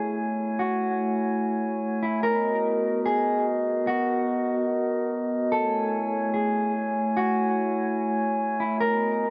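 Floating and blissful, this short hip hop fragment moves at a relaxed half-time pace as a clean, fingered electric guitar carries the melody up front, softened by a low-pass filter and trailed by tape echo. Alongside it, a glass harmonica holds pure, ethereal chords with a slow attack, also filtered, shifting from Amaj7 to Bmaj7 at 2.2 seconds and back at 5.5 seconds. A lush hall reverb and dusky production wrap the pair in a smooth, dreamy glow.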